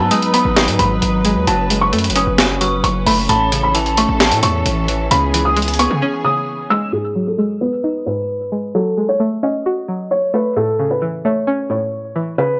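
A half-time trap groove in 4/4 drives this brooding, hard-hitting hip hop excerpt, built on a gritty boom bap sampler-style kit of hi-hat and high-tuned snare that sits up front, compressed, carrying vintage 12-bit sampler grit, and re-recorded in a large room. Beneath it, a distorted 808-style bass hits with a heavy, aggressive, saturated tone and a noise layer, and it drops out at 6.0 s for a short break after the drums have already stopped. A felt-muted upright piano carries the melody throughout, soft and intimate through a low-pass filter, with its thick felt and action noise audible. A twangy, string-like resonator pluck plays the accompaniment up front with a bright, chorused edge, and a filter sweep works across it from 6.9 s as the second section begins. Muted strings played con sordino hold veiled, bowed chords with vibrato, while an eerie, inharmonic FM bell warbles in the background through phaser and tape echo before dropping away early, all set in a dry hardware sound with transformer saturation over G#m7, F#madd9, A and C#m7 chords.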